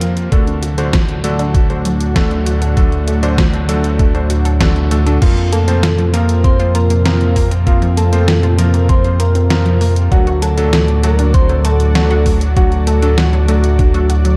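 A straight 4/4 pulse from a thumpy electronic kick and a detuned 8-bit drum machine with crash, hi-hat and snare drives this moody synthwave excerpt, where a glossy, nasal chorused synth bass sits up front beneath a lush, detuned unison pad with sidechain pumping, a round analog pluck arpeggio carrying a filter sweep through the opening 5.2 seconds, and clangy electric grand piano stabs through delay, before a soft octave-layered synth lead with vibrato and tape colour and a pure FM synth bell second line enter at 5.2 seconds over a dark, lightly reverberant production.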